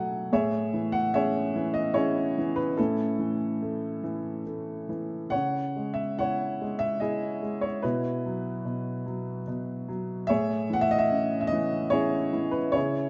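Wistful and dark, this short passage cut from a longer classical work is a lyrical solo for upright piano at 73 BPM in 3/4, played with a rubato feel and tuned to A4 = 442 Hz. The woody, boxy piano sits up front and intimate, its long sustain and audible action noise ringing out in a moderate concert hall reverb. After a brief opening fill, the harmony moves from Amaj7 through A, C#m and Bsus4 before settling back on Amaj7 at 10.3 seconds.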